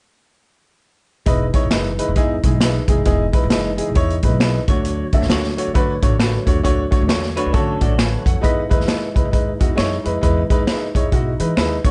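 A punchy, up-front vintage drum kit with a medium-tuned snare and rolled-off top drives this joyful, danceable slice of uptempo 1960s-style soul at 134 BPM in E major, swung and moving from Emaj7 to Dmaj7 and back. An intimate, boxy grand piano with audible action noise and plate reverb carries the accompaniment over a woody pizzicato upright bass, while a very quiet, round tonewheel organ with key click and fast rotary speaker holds sustained chords and band-limited finger snaps sit in the background. Briefly, from 7.4 to 8.4 seconds, a slightly broken-up electric guitar through a small old amp adds a picked tremolo riff just before the new section at 8.4 seconds.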